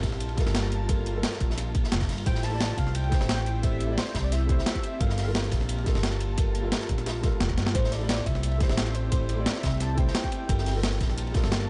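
A soft, felt-muted upright piano with audible action noise and a delay, an ethereal sidechain-pumped pad, a woody pizzicato upright bass, a punchy electronic kick and two gritty breakbeat kits (one compressed and up front, one saturated with dark cymbals) open this melancholic, soulful liquid drum and bass excerpt over a small-room ambience, before a velvety synth lead with vibrato, chorus and dub echo enters at 2.3 seconds and returns after a drum fill at 7.6 seconds.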